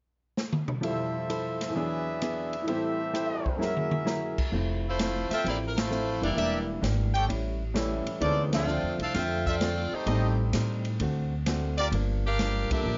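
A brassy trumpet section cuts through this energetic big band swing excerpt in F major at 130 BPM, its clear, lightly vibrato-tinged stabs sitting up front with a soft attack from 0.8 seconds. A drum fill at 0.4 seconds kicks things off, and the kit swings with dark cymbals, a punchy kick and a medium-tuned snare, while a polished baby grand piano and a dark, clean, picked hollow-body electric guitar fill in the harmony through chords such as Fmaj7, E7 and Gb9. At 4.5 seconds the woody upright bass enters up front with plucked notes. Just after, the edgy saxophone section takes the melody with vibrato, moving through Em7b5, A7 and Dm7 while the band hits accents at 5.7 and 8.5 seconds. The whole piece sits in a moderate club reverb with a slightly muted top end, and it is cut from a longer performance.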